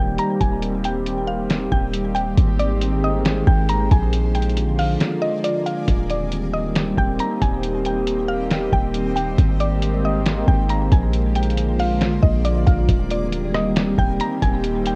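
Blissful and dreamy, this atmospheric cloud-rap excerpt in Eb major moves at 137 BPM in a half-time 4/4 feel, cycling through Eb6, Abmaj9 and Bb7 chords, with a nostalgic, warbling pad holding sustained chords under a woody, round mallet-like synth pluck that carries the melody through chorus, phaser, tape echo and a low-pass filter. A deep, boomy 808-style bass and a muffled, compressed, pitched-down sampler-style drum kit with a thumpy kick, snare, rim click and hi-hat sit up front, the kick dropping out from 5.0 to 5.9 seconds. From 0.5 seconds, a bright, reversed, swelling granular texture drifts in the background, and the whole mix has the dry, cassette-bound character of a home recording.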